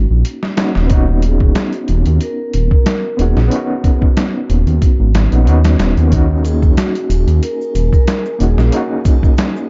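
A lightly swung sixteenth-note groove in four drives this smoky, dark trip hop fragment, cut from a longer piece, with a sampler-style drum kit up front whose pitched-down, compressed sound gives a thumpy kick, a medium-tuned snare and hi-hat a gritty, tape-warmed small-room character. Beneath it, a deep, rumbling detuned saw bass sits prominently in the mix, its beating sustained tone mellow yet heavy. An overdriven, reedy electric piano carries the accompaniment through a combo amp, colored by tremolo, lo-fi sampler crunch and tape echo, while a soft-mallet vibraphone with its motor off sings a ringing, metallic melody in the background through dub echo. The harmony moves from Ebm7 to Badd9/D# and returns to Ebm7 at 6.1 seconds, where faint maracas and triangle join alongside a very quiet, flickering granular texture with a slow attack and long release. The whole mix is steeped in echo and digital ambience, its top end rolled off for a hazy, shadowed sound.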